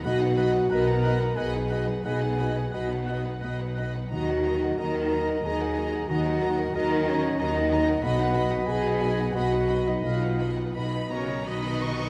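A dark French horn section holds sustained chords through this moving, sorrowful cinematic passage in a rubato 3/4 at about 84-94 BPM, falling away at 11.5 s as the harmony settles from B through Ebm and back to B. A dark violin section carries the expressive, vibrato-rich melody, while an airy flute, an oboe, a mellow vintage clarinet and a second violin section weave lines in the background. Underneath, a felt-muted upright piano with audible action noise, a very quiet lush viola section, ringing harp arpeggios, a cello section with portamento and a smooth double bass section fill out the texture inside a wet concert hall reverb.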